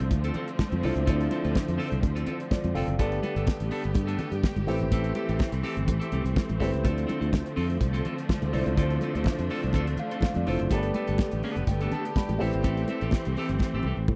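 A dry, close 1970s-style disco groove in D dorian opens at 124 BPM, with a damped 70s drum kit up front pairing a fat snare and tight kick, a growly, bright fingered electric bass, and quiet congas with a thin-skinned, soft-handed sound in the background from 0.1 seconds. A clean, picked electric guitar and a dark, boxy grand piano carry the accompaniment over lush, bowed symphonic strings holding sustained chords, cycling through Dm7, Gadd9 and Am7. The piano adds fills around 2.3 and 9.7 seconds, and a drum fill at 13.6 seconds closes this driving, danceable excerpt cut from a longer piece.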